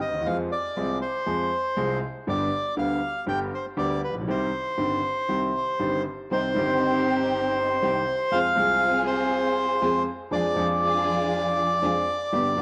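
Tango in C harmonic minor at 120 BPM with a sultry, passionate rubato feel, this excerpt sets a reedy, dark bandoneon melody up front over bright, brilliant grand piano accompaniment with deep bass and short sustain, joined at 6.3 seconds by lush, bowed string stabs with vibrato and portamento, the piano and strings carrying a cassette-tape tint, all bathed in wet spring reverb on a home cassette recording as the chords move from Fm through G and Cm to Ddim/F.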